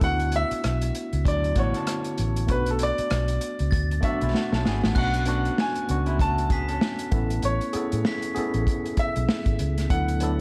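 A natural, deep-bottomed concert grand piano carries the melody and a solo through the first 5.0 seconds of this smooth, cinematic, lush 1970s-style soul piece in B dorian at 97 BPM with a swung sixteenth feel, over a worn, slightly out-of-tune tine electric piano with light overdrive, a round, foam-muted fingered bass and an up-front vintage drum kit with a punchy kick and rolled-off top whose fill leads into the second section, while a bright, twangy, slightly broken-up guitar riff enters at 1.2 seconds and a bell-like glockenspiel rings in the background from 3.7 seconds, all within a dark, warm production with light studio reverb.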